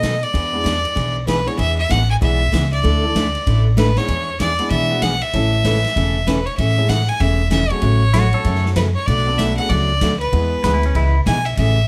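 A clear, intense fiddle opens this cheerful western swing excerpt at a brisk 192 BPM in 4/4, its bowed melody up front with light vibrato and a smooth top, over a bright, full-bodied jumbo acoustic guitar whose picking carries a touch of finger squeak. Beneath them, a pizzicato upright bass sits forward in the mix, woody, growly and thumpy, while a distant, roomy big-band drum kit swings on hi-hat, ride, snare and a boomy kick, its dark cymbals and rolled-off top keeping it in the background. From 0.5 seconds a warm upright piano adds natural, woody accompaniment. At 8.1 seconds a clean, compressed lap steel guitar slides in with a twangy second line. The harmony moves from E7 through Dsus2 and A to Amaj7, F#m/A, Bm7 and E, all wrapped in light reverb and tuned slightly low, to A4 = 438 Hz.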